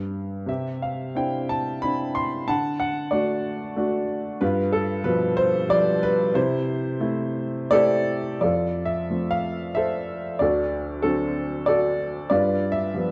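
A woody, smooth upright piano with a vintage character and long sustain plays alone and up front in this sunny, lyrical classical excerpt, moving in a rubato 3/4 at 83-97 BPM from C major through chords such as Cadd9, G7 and C6 before shifting to F major at 8.4 s, all set in a moderate recital hall reverb with a dark, warm production.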